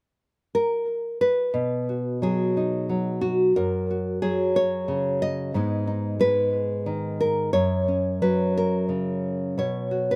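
A dry, open-air sound frames this short folk excerpt in F# major, where a solo nylon-string guitar enters at 0.5 s, fingerpicked up front with a dark, full-bodied classical tone and audible finger squeak, drifting in rubato around 60 BPM in 6/8 through B, F#, G#m and F# chords before settling on B5, in a peaceful, hopeful mood.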